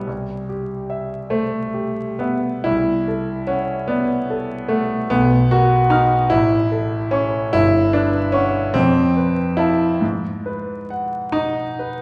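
Impressionist classical solo piano in 6/8, this nocturnal, mysterious fragment from a longer piece drifts with free rubato across a concert grand spanning G1 to F6, its tone clear and natural with a deep bass. The harmony wanders through colourful chords such as Dadd9/C, Amaj7 and Gmaj7#11 before settling on Abm7 near 10.0 seconds. The piano sits up front, yet a lush recital-hall reverb places the listener further back in the room, and a vinyl crackle and dulled top end give the sound an aged, dusky quality.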